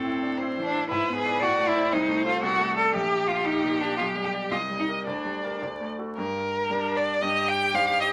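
Set in a brisk 2/4 with a rubato, pliant pulse, this quick classical-period movement for piano trio feels restless and dramatic from its opening moment. A rich, focused violin carries the melody with vibrato, while a smooth, even cello bows a close second line beneath it, both strings sitting up front and playing throughout this short excerpt. A clear, intimate baby grand piano supplies the accompaniment, its natural tone ringing with long sustain and audible action noise under the bowed voices. The harmony shifts restlessly through the first section before a second section begins at 6.2 seconds and carries the passage to its cut-off at 8.1 seconds. Moderate studio reverb gives the trio a modest sense of space, and a prominent layer of vinyl crackle runs through the whole performance.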